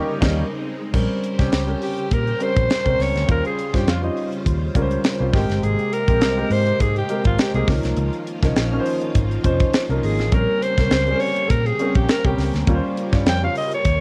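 A growling, raspy alto saxophone takes a vibrato-laced solo from 0.9 seconds, after a brief band accent, over a short-sustain baby grand piano with lush chorus, a swirling phased string machine in the background, a round, foam-muted fingered electric bass and a dry, tight funk drum kit with a high-tuned snare, giving this cassette-recorded fragment of polished 1980s jazz-funk pop a nocturnal, bittersweet swing through chords such as Bbm69, Eb13 and Abmaj9.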